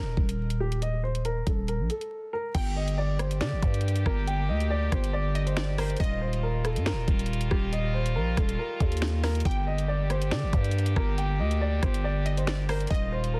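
A dark, mellow baby grand piano with audible action noise carries a delayed melody over a growling, buzzy 808-style bass as this cold, menacing drill cut opens in G minor at 139 BPM with a half-time feel, joined almost at once by an up-front electronic kit of knocking kick, sharp soft-clipped snare, finger snaps, rim clicks and tape-warm hats. After a brief break, at 2.5 s a muted, nasal French horn section enters with sustained chords moving between Gm and Ebadd9, while a glassy, detuned wavetable pluck with chorus and delay sits in the background as a second line. The dense, heavily limited mix is dry and close, with vinyl crackle beneath it.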